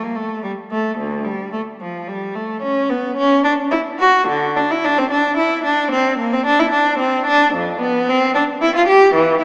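Heard through a small speaker in a church reverb with a long 3.2-second tail, this grave, introspective baroque-style suite movement for unaccompanied cello moves in a rubato 12/8 at 74 BPM in dotted quarters, with a single player bowing a rich, even line up front, from D2 to G4, with vibrato and a smooth top across the 9.4-second cut from a longer piece.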